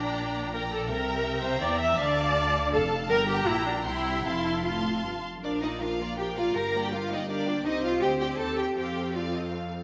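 A quick, spirited classical-period movement for string orchestra in 3/4, moving at 149-167 BPM with a graceful rubato feel, this excerpt begins in F major and shifts to Bb major at 5.4 s. A soft-edged violin section carries the melody with vibrato and expressive portamento, while a second violin section supplies a rich second line. Beneath them, up-front violas with their own gliding portamento fill out the accompaniment, and focused, lush cellos and clear double basses anchor the bass, all bathed in the wet reverb of a scoring stage.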